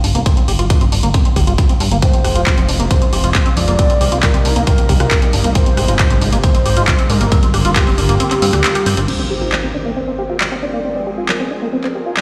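Uplifting trance at 136 BPM in C minor, emotional and soaring, cut from a longer piece. A squelchy, resonant acid bass plays arpeggios throughout, its filter sweeping and its tone thickened by lush chorus and dub echo, while a plucky analog bass with a funky, ring-modulated bite pumps beneath it until 9.1 seconds. A punchy, up-front electronic kick, layered and tape-warm, drives the groove alongside an equally tape-warm analog drum machine supplying crash, handclaps, hi-hat and rim click. From 2.0 seconds a velvety, wave-folded synth lead carries a second line with chorus and digital delay, and a silky, detuned string pad sustains the chords Fm, Cm7, Abmaj7 and Gm7 in the background. At 9.1 seconds an electronic impact marks the turn into a new section, and the mix sits in a bare stone room as if played over a big sound system.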